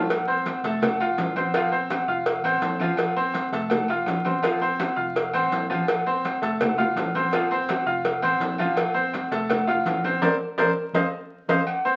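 A straight 4/4 salsa groove at 166 BPM drives this joyful, danceable clip, cut from a longer piece, with congas, cowbell, agogo bells and timbales all entering at 0.1 seconds. The bright concert grand piano sits up front with a brilliant top and deep low end, its short-sustained accompaniment moving between F and Bbsus2 before landing on Bbadd9 and F5. Beneath it, the muted fingered electric bass is dark, round and punchy, a foam-muted, amped tone sitting low in the mix. The congas ring low-tuned and saturated under soft hands, the cowbell is tight and high-tuned with hard hands in a small room, and the agogo bells and timbales offer a ringing, band-limited metal shell sound. A band accent arrives at 10.2 seconds, with a drum fill from 10.9 seconds closing the phrase. A wet studio reverb and the crackle of a very old 78 rpm record give the whole clip an aged, vintage sheen.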